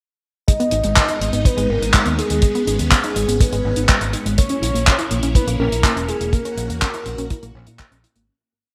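Bright 1980s-style digital production with light studio reverb frames this bittersweet, nostalgic italo disco piece, where a dry four-on-the-floor kick and a damped, dark 70s kit of closed hi-hat and gated-reverb handclaps drive a galloping, overdriven fingered electric bass, a detuned sawtooth analog pluck runs a 16-step arpeggio in the background, a swirling phased string machine holds sustained chords, and a soft, round octave-layered synth lead with vibrato, chorus and digital delay sings its motif before the piece fades out from 5.7 seconds.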